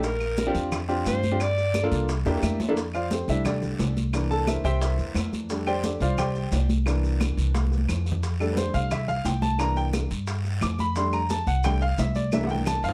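Afro-Cuban jazz, lively and danceable and cut from a longer piece, opens with a mellow alto saxophone melody marked by subtone, vibrato and scooped notes that ends at 1.9 seconds; from 2.8 seconds an intimate, slightly detuned upright piano with audible action noise takes a solo over dark pizzicato upright bass, bright high-tuned congas, tight vintage bongos, raspy guiro, grainy maracas and woody claves, with recurring drum fills and light reverb.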